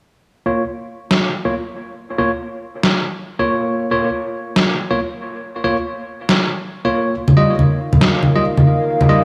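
A heavy, dark deep dubstep fragment cut from a longer piece, set in an echo-chamber reverb with small room ambience, moving at 139 BPM in a swung half-time feel in Bb dorian, where a bell-like, clean tine electric piano plays filtered stabs with dub echo from 0.5 seconds, a muffled, pitched-down, tape-warm electronic snare drum sits up front, and near the end a detuned, nasal analog pad with chorus arrives on sustained chords as bright, hard-handed congas enter at 7.3 seconds, the harmony shifting from Bbm to Ebadd9.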